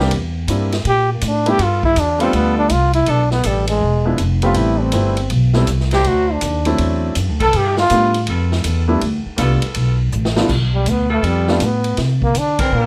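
Big band swing with a joyful, buoyant feel, this short excerpt is cut from a longer piece and moves at a brisk swing over a steady four-beat pulse. A trombone carries the melody as a soloist, its clear, present tone shaded with vibrato and placed up front, playing from 0.9 seconds to 8.3 seconds and returning at 10.7 seconds. A woody, pizzicato upright bass sits prominently beneath it, while a grand piano supplies mellow accompaniment until 11.6 seconds. From 1.6 seconds a tight saxophone section holds sustained chords with a soft attack, light vibrato and a vintage character. The drum kit sounds distant and roomy, with a punchy kick, medium-tuned snare, hi-hat, ride and crash, and a brief fill leads into the second pass through the same section. The harmony moves through rich dominant-ninth and altered chords, and the dry recording keeps every line distinct.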